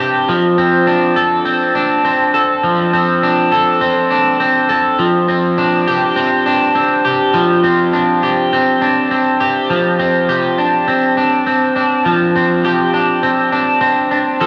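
Worn, warbling cassette tape colors this short dream pop fragment, its pitch drifting while a moderate plate reverb with a 2.7-second tail hangs around every note. A lone electric guitar carries the whole piece from 0.0 to 14.5 seconds, played at the edge of break-up so its tone sounds slightly gritty yet still warm and twangy. Set up front in the mix, the picked guitar is bathed in lush chorus and digital delay, ranging from F3 up to A4. At a steady 102 BPM in straight 4/4, it moves from Dm7 to G7sus4, with the harmony shifting at 5.0 seconds and a new section arriving at 9.7 seconds. The mood is ethereal and haunting, a drifting, half-remembered moment lifted from a longer piece.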